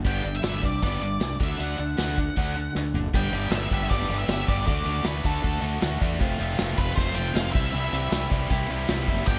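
A straight 4/4 pulse at 156 BPM drives this carefree, upbeat indie rock piece in G major: an acoustic drum kit played with bundle sticks sits up front with a punchy kick and dark cymbals alongside a biting, double-tracked overdriven guitar riff, a round, fingered fuzz bass pushes underneath, and a shadowy octave-fuzz lead guitar carries the melody from 0.1 s, while a drum fill at 2.8 s ushers the chords from G and D toward F and C, a jingly tambourine surfaces in the background at 9.3 s, and light small-room reverb frames a bright 1980s-style digital production.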